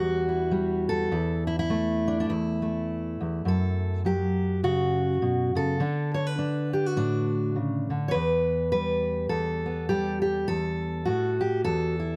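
Close, detailed and nearly dry, this haunting, melancholic folk excerpt features a full-bodied, up-front fingerpicked steel-string dreadnought guitar playing solo in E dorian at 102 BPM with a lightly swung 4/4 feel, moving through Emadd9, A5/E, F#m, D and Em across its 12.2 seconds.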